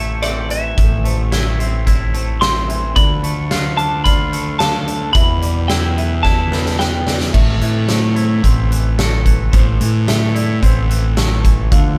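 A brooding, melancholic post-rock excerpt in A minor at 110 BPM opens with a picked, compressed twelve-string electric guitar melody over a growly fuzz bass, together with a clean, scooped twangy electric guitar playing arpeggios with vibrato, a mellow felt-muted upright piano with audible action noise in the background, and very quiet pedal steel chords with volume swells and slide. A huge arena drum kit with a boomy kick and bright cymbals enters at 0.2 s, sitting up front beside the bass, and its fill from 6.2 s leads into a new section at 7.3 s as the harmony moves from Am through Dm and Em back to Am. The twelve-string drops out at 7.2 s, leaving the rest of the band playing together in one live room with light reverb.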